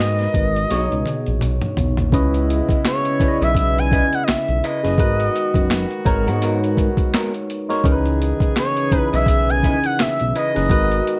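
R&B with a neo-soul lean, this soulful, sultry cut moves at 84 BPM in 4/4 with a swung sixteenth feel in C# dorian, drifting through G#m9, B69 and C#m9 chords. Up front, an expressive synth lead with portamento and vibrato sings the melody, its soft attack thickened by chorus and a slapback echo, while a barky tine electric piano, clean through a combo amp and colored by phaser, fills out the harmony. Underneath, a mellow sawtooth-and-square synth bass holds sustained low notes, and a gritty boom bap sampler-style kit, pitched down and overdriven with a thumpy kick, high-tuned snare, hi-hat, handclaps and toms, plays a drum fill from 0.7 to 2.1 s. At 2.1 s a jazz-style horn section with a smooth top enters in the background with slapback-echoed stabs, and from 3.4 s a dark, slightly broken-up electric guitar through a small old amp adds a lo-fi fingered second line bathed in spring reverb. 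The whole mix sits in a light reverb, and the passage is cut from a longer piece.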